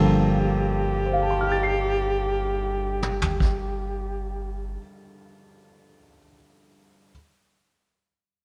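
Jazz ballad in G minor at a slow 51 BPM with a swung 4/4 feel, this wistful, melancholic fragment opens on a Gm9 chord as a clear, up-front alto saxophone sings a solo line around G4 with vibrato, subtone and scooped notes over a dark, mellow grand piano and a woody, thumpy pizzicato upright bass. A vintage brush kit adds a brief touch of punchy kick and toms from 3.0 to 3.8 seconds, its rolled-off top giving a warm, mid-forward colour. The saxophone and bass stop at 4.8 seconds, and the piano rings on alone until 7.1 seconds inside a light reverb.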